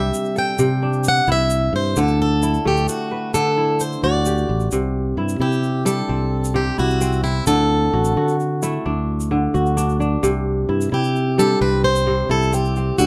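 This West African traditional piece pairs strings with a light, joyful groove, moving at 87 BPM in a flowing 12/8 lilt in C lydian, with the harmony alternating between C and D. A picked, plugged-in acoustic guitar carries the melody up front with a boxy, fresh-stringed brightness, swing-style phrasing and audible finger squeak, taking a solo turn over the first 4.7 seconds before the music moves into a new section. Beneath it, the kora spins fingerpicked arpeggios with a ringing, crisp tone. A fingered electric bass sits forward in the mix with a warm, direct sound, and a close, grainy tube shaker joins at 0.1 seconds. Close, detailed microphones and a touch of reverb keep the whole short cut from a longer performance intimate and clear.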